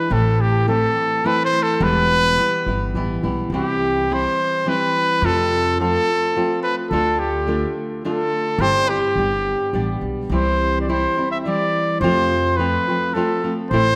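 A clear, soft-attacked trumpet sings a passionate classical-style solo up front with a slapback echo, over full-bodied fingerpicked nylon-string guitar whose finger squeaks catch the ear, in this dramatic mariachi passage cut from a longer piece. A woody, thumpy pizzicato upright bass on steel strings joins at 0.1 s. The trio moves through a progression from Am to F at 106 BPM in 3/4, tuned to A4 = 444 Hz, inside a moderate scoring-stage reverb.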